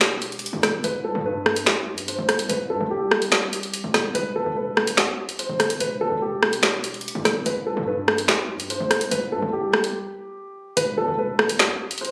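Drill hip hop in E minor at 145 BPM with a half-time feel, tense and dark: a mellow, shadowy grand piano carries the melody through a digital delay, a punchy, heavy 808-style bass with a sine body, noise layer and fast attack plays until 11.7 s, and an up-front overdriven electronic drill kit of handclaps, hi-hat, rim click and woody snare drives the track, all heard in club reverb as if captured on a phone in the room, with a break at 9.9 s before the final section arrives at 10.8 s.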